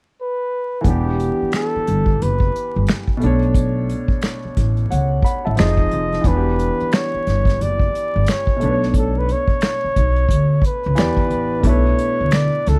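A mellow flugelhorn opens at 0.2 s with a soft-attack, lightly vibrato-shaded jazz solo full of scooped notes, joined from 0.8 s by an intimate grand piano with audible action noise and long sustain and an airy small-room acoustic kit played with bundle sticks, adding finger snaps, hi-hat, a punchy kick and a medium-tuned snare, with a woody pizzicato upright bass arriving at 0.9 s to round out this introspective, late-night neo-soul R&B piece, which carries a swung sixteenth-note feel and a dry, close 1970s-style studio sound dusted with vinyl crackle.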